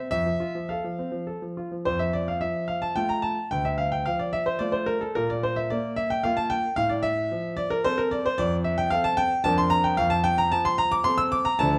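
In a lilting three-beat metre shaped with rubato, this elegant, playful passage from a classical-period piano sonatina features a solo concert grand heard up front, its clear, natural tone and deep bass ringing in a moderate recital-hall reverb as the harmony moves from F through Dm and Bb back home to F.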